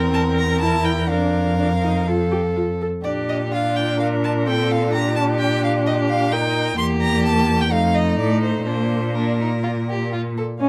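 At 126 BPM in 4/4 with a rubato feel, this quick, graceful and cheerful classical-period movement for string quartet in Bb major unfolds over a single section cut from a longer piece, with harmony passing from C7/E through Gm/Bb, Edim and F7 to settle on Bb. A focused second violin and a dark viola, expressive with vibrato and portamento, sound from the start, while the clear cello anchors the bass from E2 to Bb2. The smooth, even lead violin enters at 0.1 s and sings up to C6, all captured by close, detailed microphones in light reverb.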